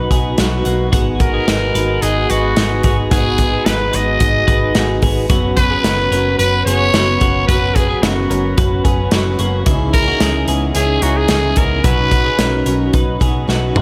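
Youthful and bright, this jangly indie pop excerpt moves at 110 BPM in B major, with a raspy, growling trumpet carrying the melody up front from 1.2 s, its slapback echo matched by the twangy, compressed twelve-string electric guitar arpeggios. Beneath them a round, foam-muted picked bass and a punchy, up-front studio drum kit drive the groove, while a picked steel-string acoustic guitar and a mellow combo organ with light vibrato sit in the background. A lush hall reverb gives the mix a big arena sound. The chords move from B through G#m7, F#sus4 and C#madd9 to Badd9, and a drum fill at 13.5 s closes the passage.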